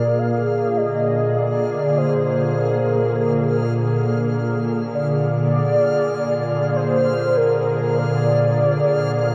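Luminous and warm, this ambient fragment of a longer piece drifts at 50 BPM in 3/4 over a Bb7 chord, with a velvety, detuned sawtooth lead carrying a mellow melody through chorus, vibrato and diffuse ambient delay. Up front, an evolving wavetable pad morphs through sustained chords with ensemble chorus, while a bright, bowed cello section holds a very quiet, intense bass note and a reversed, granular texture fades in high above throughout the 9.3 seconds. The whole mix sits in a huge, wet reverb with an 8.3-second tail and wears the warbling pitch drift of worn cassette tape.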